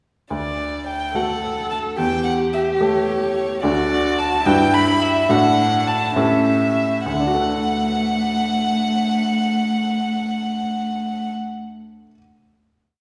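A quick, spirited and cheerful classical-period movement for piano trio, where an intimate, airy-bowed violin carries the melody sul tasto with light vibrato over a clear baby grand piano marking bass and chords on the beats and a soft-attack cello adding a counter-melody and sustained chords from 1.1 s, the brief theme slowing from 2.8 s before settling on a final chord at 7.1 s in a reverberant recital hall.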